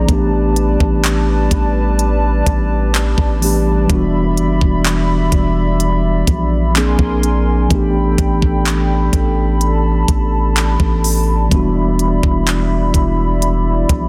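Moody and late-night, this slow contemporary R&B excerpt at 63 BPM sets a mellow tine electric piano and a hollow, flute-like pad with chorus over a deep, sine-toned 808-style bass and an up-front trap kit of knocking kick, crisp hi-hats and handclaps, moving through chords such as A9sus4, Em7 and A#9 in a dry, dense, heavily limited modern mix.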